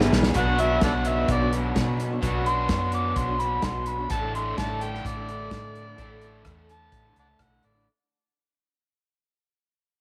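A drum fill from an airy country kit with a punchy kick opens this jangly folk and heartland rock excerpt at 128 BPM, and at 0.4 seconds a gritty, amplified harmonica takes a pop-style solo with light vibrato and tongue slaps over Bm and Asus4, backed by a double-tracked overdriven garage guitar riff up front, a round, dark hollow-body bass, and a bright picked steel-string acoustic with finger squeak in the background, all set in light reverb as the piece fades out.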